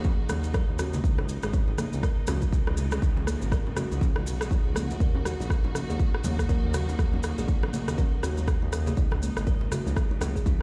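A punchy, reverb-tinged electronic kick sits up front in this hypnotic, spiritual afro house excerpt at 121 BPM in Eb phrygian, swung on the 16ths, joined from the start by lush bowed symphonic strings holding vibrato-rich chords, a woody, hollow kalimba spinning delayed arpeggios, and a smooth sawtooth synth bass warmed by tube saturation, all three pumping against the sidechain, while grainy, mellow maracas join in and ringing low-tuned congas sit in the background, and a layered electronic rim click enters at 0.3 s, the harmony moving between Ebm7 and Dbmadd9 as if played on a big sound system in a bare stone room.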